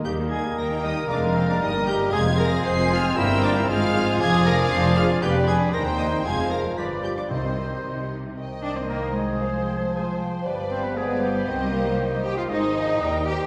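A dark, woody violin section sings the melody of this quick, cheerful and graceful classical-period movement for symphony orchestra at 116 BPM in 2/4, moving from Eb major into C minor at 4.2 s, with clarinet, airy flute, oboe and a lush second violin line weaving beneath, while bassoon, a very quiet viola section, mellow French horns holding chords, and a focused cello section over double basses carry the harmony, a clear trumpet punctuates with stabs until 8.1 s, round soft-mallet timpani sound briefly from 7.3 s, and the whole sits in the wet reverb of a church or concert hall.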